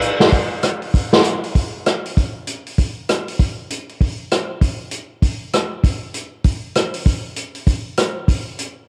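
A home cassette recording with a moderate spring reverb shapes the sound of this short jazz fragment. A swinging big-band drum kit plays alone throughout its 8.7 seconds, in 4/4 with a lilting swing on the eighth notes. The kit sits up front in a natural-sounding studio room, with a punchy kick, a medium-tuned snare, rim clicks and hi-hat, and a brassy, swinging mood.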